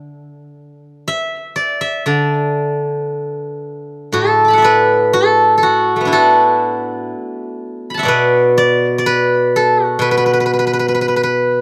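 A steel-string zither, played with fingerpicks, carries this short solo passage of Chinese traditional plucked-string music, its ringing, silvery tone sitting up front from start to finish. The mood is elegant and serene, with a rubato feel drifting around 56-65 BPM in 4/4 and centred on a D gong mode, tuned slightly low at A4 = 436 Hz. The zither ranges from A2 up to D6, and its acoustic sound carries a warm glow. The passage falls into two parts, with the second beginning at 4.2 seconds and continuing to the close at 11.6 seconds. Recorded outdoors, free of any room sound and touched with light reverb, it is cut from a longer piece.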